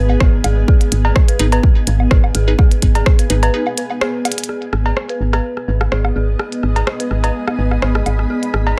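A lightly reverberant mix opens this sparse, quirky minimal techno piece, cut from a longer track, with a gentle swing in its sixteenths. A punchy, tape-tinged electronic kick sits up front alongside a soft, round, woody FM bass, while a minimal click drum kit adds clicky, filtered hats and rim clicks, and dry analog-toned woodblock, cowbell and rim-click percussion ticks through a digital delay. Above them, an eerie, inharmonic synth bell riff warbles with chorus, dub echo and sidechain pumping, and a blurred, evolving granular pad drifts in its own reverb. Crisp, wave-folded wavetable chord stabs with a moving notch enter at 1.4 seconds, and the kick drops out at 3.2 seconds as a short break and a drum fill lead into the second half. From 4.5 seconds a filter sweeps across the mellow bell, giving the closing passage a shifting character.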